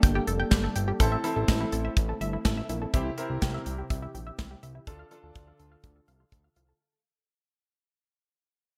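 A straight 4/4 pulse at 124 BPM comes from a polished, up-front studio drum kit with a tight kick, medium-tuned snare and hi-hat, wrapped in gated reverb, in this nocturnal, cool synth-pop excerpt with bright 1980s-style digital production that fades out across its whole length. A fat, saturated sawtooth bass sits up front, while a round analog pluck spins chorused arpeggios through a digital delay with a filter sweep and sub octave. Behind them a brassy, detuned pad holds sustained chords with vibrato and a filter swell, and a clear concert grand piano adds open accompaniment from 1.0 to 5.7 seconds over a Gmadd9, Am, C and Dm progression.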